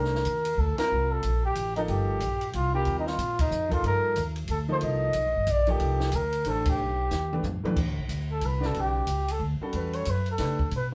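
A bucket-muted trumpet carries the melody with a veiled, breathy tone, light vibrato and scooped notes, sitting up front yet touched by a roomy distance in this searching, cool modal jazz waltz with a swing feel. Beneath it, a clear concert grand adds long-sustaining chords and a woody pizzicato upright bass holds the low end. A compact cocktail kit with dark cymbals, a high-tuned snare and a tight kick joins the band accents and plays a fill at 7.1 s, and at 7.8 s the harmony moves to a new modal center as the muted trumpet takes a solo in this short live-room cut from a longer piece.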